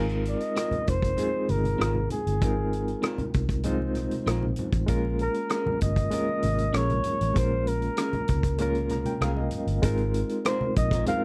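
A barky, lightly overdriven reed electric piano with a fast tremolo opens this silky, cinematic slice of lush 1970s-style soul, joined at once by a dark, round, foam-muted fingered electric bass, all moving at an easy 97 BPM in a straight 4/4. A punchy, gritty vintage drum kit with a rolled-off top sits up front on hi-hat, kick and rim click, while low-tuned congas played with soft hands sound distant and very quiet, as if from a large room. From 0.3 seconds a breathy, mellow flugelhorn carries the melody in a jazz style, with light vibrato and scooped notes. An electric guitar through a small old amp adds a slightly broken-up, compressed picked riff underneath. The harmony shifts from Ab69 to Bbm7 and back, and the electric piano slips in a fill from 8.6 seconds just before a new section arrives at 9.8 seconds. The sound is dry and close, a 1970s-style studio recording cut from a longer piece.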